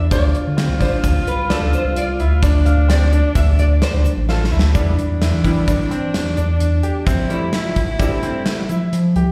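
Heard through a live venue's PA with light recital-hall reverb, this tense, intricate progressive instrumental fragment in 5/4 at 130 BPM in D dorian opens with a dark, clean, double-tracked archtop guitar solo over Dm7, until a drum fill at 4.3 seconds leads into Em7 and Fmaj7, while a punchy, gated 80s drum kit, an up-front sawtooth synth bass with ring modulation, slapback-echoed bright grand piano arpeggios, a clear alto saxophone second line with subtone and light vibrato, and a faint, grainy egg shaker fill out the band.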